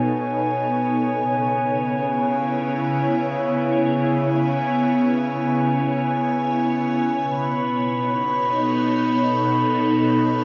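A dark, reverb-soaked sound fills this 10.4-second excerpt, carried by a scoring-stage reverb with a 1.8-second decay over a small room ambience, and the top end is rolled off for a warm, shadowy feel. The piece is reflective, melancholic ambient music in free time. An evolving wavetable pad sits up front, bright and detuned, its sine and triangle tones morphing under ring modulation, ensemble chorus, phaser and shimmer reverb as it holds sustained chords that move from B7 to C#m7 at 1.2 seconds and back to B7 at 7.2 seconds. Beneath it, a distant cello section bows an earthy, biting bass line in the background, gradually fading out across the whole passage. High above, a glass harmonica adds a pure, ethereal texture, its smooth, slow-blooming tones glistening through its own shimmer reverb.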